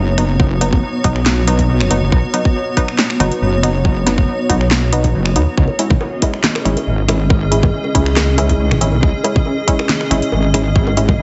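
A heavy, detuned wobble bass sits up front in this dark deep dubstep excerpt, its sawtooth and sine tones saturated, compressed and thickened with chorus into a mellow low end. The groove runs at 139 BPM in 4/4 with a half-time feel in C# minor, moving from B to C#m at 5.6 seconds. A tight, overdriven electronic kick and a layered deep house kit of finger snaps, handclaps, metallic hi-hats and a punchy snare drive the track, both treated with studio reverb. Above them, muted, deep dub chord stabs pluck through a filter with chorus and dub echo, while a cloudy, blurred granular pad holds bright, full-bodied sustained chords that slowly evolve. From 5.7 seconds, soft-handed bongos and congas join in the background with dub echo. The whole piece sits in a moderate echo-chamber ambience with a heavily compressed, radio-like tone that cuts away the top end.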